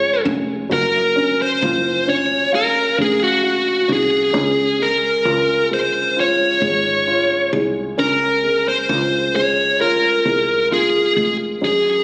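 A smooth, overdriven lead guitar carries the melody up front, its dark, picked tone moving between Gb4 and Db5 across this 12-second fragment of a longer pop ballad. Beneath it, a felt-muted upright piano plays a mellow, intimate accompaniment spanning Gb2 to F5, with the soft clatter of its action audible in the mix. A woody fretless electric bass adds a growly, round low end from F1 to Db2 and drops out at 11.6 s, just before the piano and guitar finish. The tempo is a slow, straight 66 BPM in 4/4, in Db major with tuning at A4 = 438 Hz, and the harmony moves from Db to Gb5 at 0.7 s and back to Db at 4.3 s, giving the passage an emotional, hopeful feel. The recording was captured on a phone in the room, then given compression and a lush hall reverb with a 2.9-second decay.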